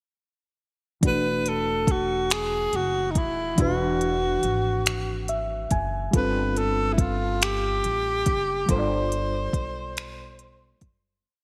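A breathy tenor saxophone carries the melody up front, close-miked and whispered, with a soft attack, warm vibrato and short, motif-based call phrases in a jazz style. This complete piece is a slow, intimate R&B number in six-eight that sits on one verse. Beneath the horn, a gritty, overdriven reed electric piano played through a combo amp holds spread chords with grace notes, adding a short fill at 4.9 seconds before the harmony moves from E9sus4 to G9sus4 at 6.1 seconds. A woody, growly upright bass, plucked pizzicato on steel strings, plays a slow, sliding line with chromatic approach notes. The electronic drum kit sits up front with finger snaps, crisp hi-hats and a soft kick, its tape-tinged sound wrapped in gated reverb. The mix has a bright 1980s-style digital sheen and a lush hall reverb, and it fades out from 8.7 seconds.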